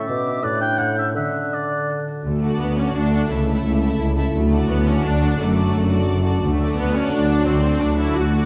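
Classical orchestral music in a fast, dramatic romantic vein, this stormy and restless passage in D major moves at 171 BPM in 3/4 and is cut from a longer piece. It opens with a brief woodwind statement: an airy, bright silver flute and a distant, roomy oboe carry second lines high above a mellow bassoon, while a ringing concert harp plays arpeggios in the background throughout. At 2.2 seconds the woodwinds give way to the strings and brass, with a smooth, even viola section filling in the accompaniment, a vintage-toned French horn section holding sustained chords behind, and a dark cello section with expressive portamento taking up the bass line, joined a moment later by the double basses. The melody arrives at 2.4 seconds in a distant, intense violin section, with a second, more focused violin section beneath it, both lush and full of vibrato. The harmony moves from B minor through A7 to D, later touching A/C# and D/F# before settling on D. 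A wet scoring stage reverb gives the dark production a spacious sheen.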